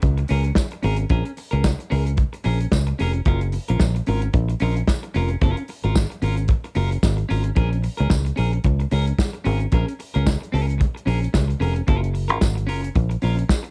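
Disco in Bb minor at 112 BPM with a light 16th-note swing, this driving, glamorous excerpt from a longer piece is built on an up-front soul drum kit with a punchy kick, medium-tuned snare and hi-hat, dark and smooth in a small room, and a foam-muted fingered electric bass that sits just as forward, while a bright, twangy, compressed clean electric guitar played with a pick shimmers through harmonic tremolo and cassette tape further back, a jingly tambourine joins at 0.6 seconds, and the Bbm7 to Gbmaj7 changes roll along in a dry home recording on cassette.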